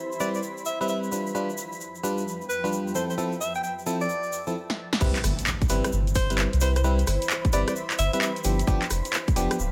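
Lightly reverberant with a digital ambience and a layer of vinyl crackle, this soulful, bouncy two-step UK garage excerpt at 131 BPM in C major opens with a very quiet, detuned analog pad and a cloudy granular pad pumping under sidechain, alongside a grainy tube shaker, a bright jazz-style alto saxophone melody with scooped notes and tape echo, and glassy, bell-like FM electric piano stabs with chorus, before a punchy analog drum machine fill at 4.7 seconds leads into the drop at 5.0 seconds, where a tight, layered electronic kick, a deep, round dub sub bass and a very quiet impact join.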